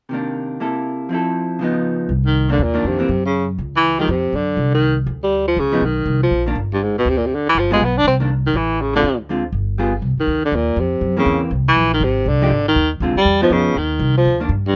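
A mellow baritone saxophone carries the melody up front, its subtone voice colored by vibrato and scooped notes, in this late-night, moody excerpt of small-group swing and bop in C minor at a brisk 242 BPM. A dark, clean hollow-body electric jazz guitar opens alone with picked chords. A woody, thumpy pizzicato upright bass joins at 2.1 seconds, and the sax follows at 2.3 seconds over minor ninth and altered dominant harmonies. The close, detailed sound carries little reverb, giving the group an intimate, dry presence.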